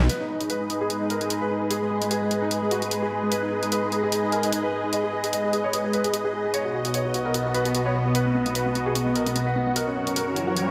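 A lush, thick unison pad stands out most, its detuned sawtooth and square-wave layers with a sub octave holding sustained chords up front, slow to attack and long to release, colored by chorus and phaser. This brief cut from a heavy wobble dubstep track sits in a half-time feel with a lightly swung sixteenth-note lilt, and its mood is chaotic and menacing. Beneath the pad, a felt-muted upright piano carries a soft, mellow, intimate melody through a delay, while an electronic hi-hat adds bright, layered, overdriven hats that sound re-recorded in a small room. The harmony moves from G# minor to B at 6.5 seconds and to F# at 9.8 seconds, and an electronic riser enters in the background at 10.0 seconds. The whole mix is dreamy and soaked in a long hall reverb.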